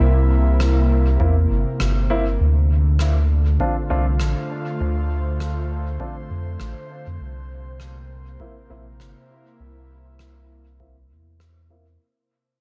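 The recording sits in a light reverb with the feel of a small room, and the whole clip, cut from a longer piece, fades out across its 12 seconds. This hazy, meditative ambient dub fragment moves in a gently swung four, its harmony shifting between C7 and Dm7. An airy, breathy synth pad holds sustained chords with a slow attack, detuned layers and a chorus shimmer, while a soft, round sub bass sits up front beneath it. A rim click with a big-room acoustic character enters at 0.6 seconds and trails dub echo, and from 1.2 seconds a deep, tape-toned electronic kick joins. A woody upright piano plays stabs with long sustain through a low-pass filter that sweeps across the entire clip, its notes spilling into dub echo.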